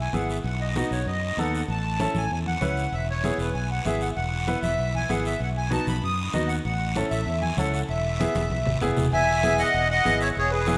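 Cumbia at a brisk 194 BPM in E major, this sunny, festive excerpt has a reedy, sweet accordion with light tremolo tuning carrying the melody up front over a direct, fingered electric bass, while a brilliant, woody upright piano adds short-sustained accompaniment and very quiet, thin-skinned congas and a raspy guiro fill out the percussion, all in a moderate stage reverb, with a fill from 8.4 to 9.1 seconds leading into a new section at 9.1 seconds.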